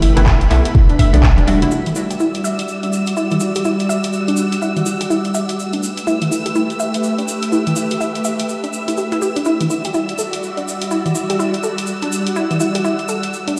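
A stone-room echo and a moderate plate reverb surround this late-night, hypnotic deep house excerpt at 124 BPM in E minor, sounding as if played on a big sound system in a bare room, with a swung 16th feel moving between G69 and Em9. Up front, a silky soft string machine holds sustained chords with ensemble chorus and sidechain pumping, joined by a round analog pluck spinning arpeggios through chorus, cassette tape and digital delay, a faint shimmering violin string-machine texture, and a punchy analog drum machine with handclaps and hi-hat. In the opening seconds a deep sine-and-triangle sub bass, a muted phaser-tinged dub chord stab, soft-handed congas and a forward electronic kick drum from 0.3 to 1.3 s mark the start before dropping out, and a grainy tube shaker comes in at 1.7 s.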